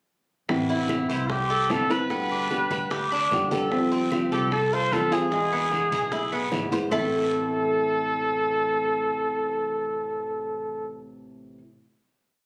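Captured on a phone in a club-like room with light reverb and compression, this sultry Cuban son and guajira piece in A minor at 150 BPM sets a punchy, vintage trumpet melody up front over a metallic, picked tres guajeo, a dark, fingerpicked nylon-string guitar, a woody pizzicato upright bass playing a tumbao that anticipates the chords, and very quiet bongos, low-tuned congas, raspy guiro and distant claves that drop out after a drum fill at 6.5 seconds, leaving the strings and trumpet to ring through a final Amadd9 chord.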